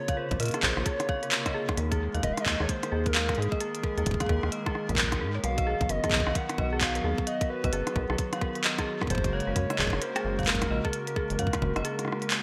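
Bright, 1980s-style digital production with moderate plate reverb frames this intricate, melancholic IDM excerpt in swung 4/4, where a warbling, nostalgic lead with chorus and digital delay carries the melody over a hollow, flute-like pad's sustained chords, an eerie, inharmonic FM bell with tremolo spins arpeggios, a rubbery, saturated acid bass sits deep beneath, and a glitchy, up-front kit of handclaps, clicky hats and rim clicks plays alongside a tight electronic kick that drops out at 11.8 seconds.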